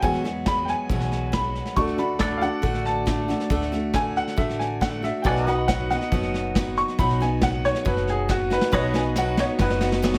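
A straight 4/4 groove at 138 BPM rides on a dark, rolled-off brush kit and a woody, thumpy pizzicato upright bass in this sunny, down-home honky-tonk and classic country excerpt moving through Eadd9, D and B chords. A brilliant upright piano with audible action noise takes the solo until 8.7 seconds, with a drum fill at 8.5 seconds leading into a new section, while a full-bodied picked dreadnought acoustic guitar sits up front and a twangy, clean pedal steel holds sustained chords. Deep in the background, a very quiet concert grand piano with rich bass adds soft support, and the band sits in a moderate large-studio reverb.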